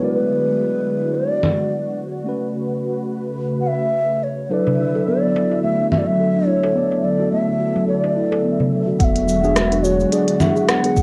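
Hypnotic and earthy, this organic downtempo excerpt at 107 BPM has a swung feel, with a breathy, hollow bass bansuri carrying the melody up front through cassette tape and analog delay over a mellow tine electric piano, a sawtooth analog pad with chorus and sidechain pumping, and chords moving from E9 to A69 and Dadd9. A round, ringing steel tongue drum played with soft rubber mallets sounds at the start and returns at 4.5 seconds, and a crisp, close darbuka joins soon after. A tape-softened organic electronic kit of congas, hi-hat, rim click and shaker settles in at 5.9 seconds, before a deep sine sub bass with tube saturation and a deep electronic kick arrive at 9.0 seconds, all in a home-cassette sound with a short, wet reverb.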